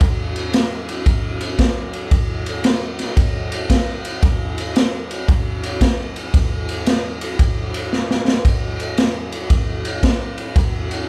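A swung 4/4 groove at 114 BPM drives this swaggering, soulful blues excerpt, played on a raw garage drum kit of boomy kick, medium-tuned snare and ride cymbal that sits up front with a gritty, saturated, rolled-off tone and a pumping room sound, all set in a moderate large-studio reverb with a drum fill at 7.9 seconds leading back into the opening section.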